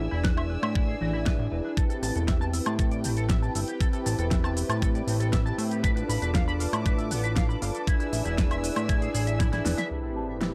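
A straight 4/4 groove at 118 BPM drives this groovy, sensual nu-disco excerpt in A minor, where a knocking, overdriven electronic kick and a layered pop kit of fat snare, hats, shaker and woodblock sit under a thick, detuned sawtooth bass, a dark, clean envelope-filtered guitar riff with chorus and delay, a smooth, warbling vintage pad under a filter sweep and sidechain pumping, and soft-attack bowed strings played sul tasto, moving through E7, Am9 and Bm7b5 before a drum fill and an impact with a sub drop at 9.9 seconds.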